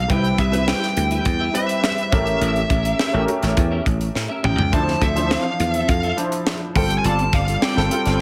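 A straight 4/4 groove at 104 BPM drives this upbeat, urban slice of polished 1980s jazz-funk pop in C major. A tight funk drum kit with a high-tuned snare sits up front and plays a fill at 4.2 s, beside a growly, punchy thumbed slap bass. A clear baby grand piano with ensemble chorus accompanies through Cmaj7, A7b9, Dm9 and G9sus4, while a twangy clean electric guitar riff with chorus stays in the background from 0.1 s. A bright overdriven lead guitar carries the melody through tape echo, set in light small-room ambience.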